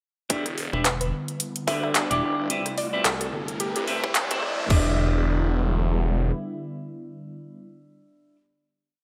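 A swung 16th-note groove at 109 BPM in 4/4 drives this short, funky and gritty glitch hop piece in E minor. An overdriven, tight electronic kick with a broken pattern sits up front beside a kit of rim clicks, bright closed and open hats, handclaps and crash, all edited and soaked in studio reverb. A thick, swirling detuned saw bass runs through a phaser in chopped phrases, while a hollow, bouncy square bass answers it. Over an Em7 to Am7 progression, a clean electric guitar plays syncopated rootless chord stabs roughened by 12-bit sampler grit, sidechain pumping, a low-pass filter and digital delay. A woody, percussive wave-folded pluck adds short answering phrases with chorus and delay, and a smooth analog pad under a filter sweep holds sustained chords with chorus, grit and pumping as a background riser builds the tension. The drums drop out at 4.8 s, leaving a final Em7 chord to ring in a bright 1980s-style digital mix with plate reverb.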